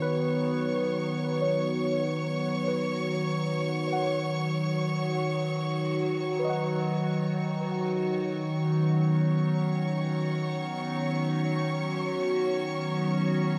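Drenched in a huge, dreamy reverb with a 7.6-second tail, this serene ambient fragment in B major drifts in free time. An up-front wavetable pad morphs through sustained chords, its slow attack and long release colored by phaser and a filter sweep for the first 8.0 seconds, while muted, felt-like synth keys add soft, dark, intimate arpeggios shaded with chorus, phaser and delay until 8.4 seconds. Above them, a close, clear studio violin section holds a focused, bowed texture with vibrato, keeping the mood peaceful throughout.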